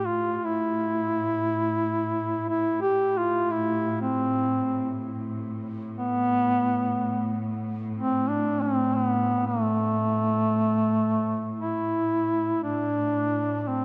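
Caucasian folk lament in A minor, solemn and mournful, moving at a slow 59 BPM in 3/4 with uneven, rubato beats. A solo duduk carries the melody up front between A3 and G4, its tone warm and folk-styled with vibrato, over a rich, smooth bowed string ensemble holding an even drone on A2 with its own vibrato. A moderate cathedral reverb and dark production surround this brief fragment, which shifts into a new section at 12.7 seconds before breaking off at 13.8 seconds.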